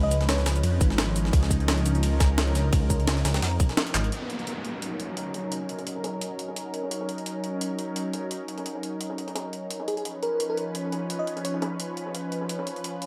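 A lush unison pad, a deep, rumbling detuned saw bass and a sparkling, bell-like FM electric piano with vintage 12-bit sampler grit open this soulful, rolling liquid drum and bass excerpt in Eb minor at 172 BPM, joined by a pitched-up breakbeat kit with a high-tuned snare re-recorded in a large room, a tape-warm jungle kit in the background and a tight, up-front electronic kick, until the kick drops out, a drum fill lands at 3.9 seconds and the bass falls away, after which a downlifter passes through and the electric piano returns at 9.9 seconds as the chords move from Db9 to Ebm7 and back in light digital ambience.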